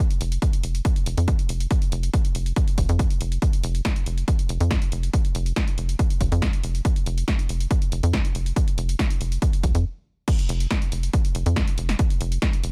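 A heavy, overdriven electronic kick sits up front, layered and hard-hitting at the centre of this driving peak-time techno cut, taken from a longer piece. Beneath it, a tight sequencer bass built from sawtooth and square-wave tones plays short filter plucks with a fast attack and a decaying tail, sounding mellow yet punchy as sidechain pumping makes it breathe. A layered electronic drum kit adds crash cymbal, hi-hat and a punchy snare, overdriven and treated with studio reverb like the kick, though it sits lower in the mix. The mood is industrial and relentless, and the overall sound is fairly dry. The groove halts briefly in a stop from 9.8 to 10.3 seconds, then a drop carries the track from 10.3 seconds to the end of the clip.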